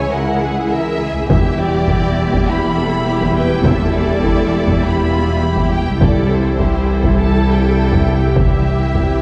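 Cinematic hybrid orchestral and electronic film score at 102 BPM in 4/4, relentless and futuristic in mood, heard as a short cut from a longer piece moving through C#m, Em and C chords. A distant violin section carries the melody between C5 and B5 over a soft-attack second violin line, even violas, a detuned sawtooth unison pad with chorus, and a dark low end of cellos with portamento and woody double basses. A vintage, band-limited taiko ensemble played with heavy sticks enters at 1.3 seconds, and the whole is set back in a wet scoring stage reverb.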